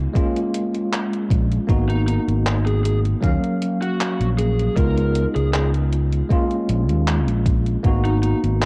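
A bell-like tine electric piano sits up front, bright and clean under lush chorus, cassette tape and tape echo. It floats over Bbm7, Abm7, Ebm9 and Db7 chords in this woozy, hazy vaporwave excerpt at 78 BPM, alongside a fretless electric bass warmed by tube saturation. From 0.2 seconds a thumpy, overdriven electronic kick and a detuned 8-bit drum machine of handclaps and hi-hat enter, both sounding re-recorded in a small room, and at 1.9 seconds a dark, picked lead guitar through a small cranked amp carries the melody, all with the dry, lo-fi character of a home cassette recording.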